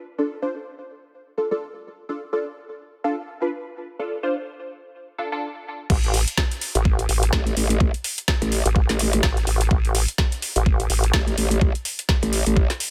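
Aggressive and bouncy, this bass house cut from a longer piece opens on a band-passed chord stab, nasal and full-bodied with detuned sawtooth bite, run through phaser, analog chorus, gritty 12-bit sampler character, delay and sidechain pumping while a filter sweep plays over a D minor chord. After a short break, the drop lands at 5.9 seconds, the harmony falls away, and a vowel-sweep wobble bass arrives with a resonant, formant-filtered tone, chorused, tube-saturated and pumping against the beat. An overdriven electronic kick with a knocking punch enters alongside it, joined by a layered garage kit whose woody snare, metallic hi-hats and crash cymbal carry a swung sixteenth-note feel. A second, growling bass joins at 7.3 seconds, saturated and sustained with the same chorus and pumping. The drums and basses sit up front in a dry mix with little reverb.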